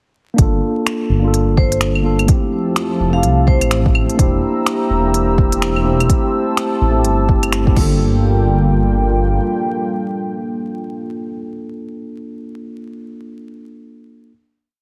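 Melancholic and nocturnal, this future garage piece rides a skittering, shuffled two-step groove of muffled, overdriven kick with crisp hi-hats, claves, finger snaps and crash cymbal, while a dark, detuned saw bass rumbles beneath in long gliding notes. A mellow tine electric piano holds rootless chords with syncopated pushes, gritty with vintage 12-bit sampler texture, sidechain pumping and digital delay; a metallic hard-mallet vibraphone adds short ringing phrases with tape echo at 1.6 s, and a moody analog pad with chorus and pumping enters at 2.3 s. When the drums stop at 7.9 s, the piano, pad and bass carry the final hit, all heard through a heavily compressed, radio-like sound with vinyl crackle and light reverb.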